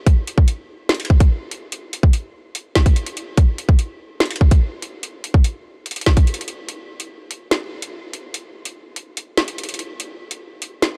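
An electronic drill drum kit sits up front in this cold, ominous hip hop excerpt at 145 BPM with a half-time 4/4 feel, its hard-clipped kick, woody snare and metallic hi-hats playing from 0.1 to 10.9 seconds in a dark, tape-warm, dry mix, with a break arriving at 6.7 seconds.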